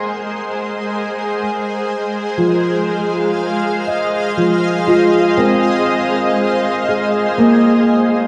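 A shimmering, ethereal pad and a felt-muted upright piano fade in together from the very start, the pad holding detuned, granular sustained chords up front with chorus and plate reverb while the piano's soft, dark arpeggios drift through tape echo. This luminous, peaceful ambient fragment rests on a single Fm7 chord for its 8.3 seconds. Both parts carry a cassette-tape character, set in a small, wet home room.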